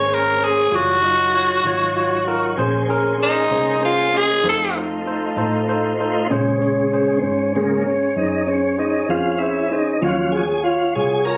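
Slow blues in 12/8 with a soulful, smoky mood, this excerpt opens with a raspy, growling tenor saxophone solo up front that drops out at 4.8 seconds, before the smooth tonewheel organ, turning through a slow rotary speaker with chorus vibrato, takes the solo from 6.3 seconds over Bbm9 and Ebm9 changes, as a bell-like, barky tine electric piano comps through a combo amp, a breathy, mellow small flute group holds unsteady chords in the background, and a dark, round, foam-muted fingered bass anchors the low end, all in a dry room sound caught on a phone.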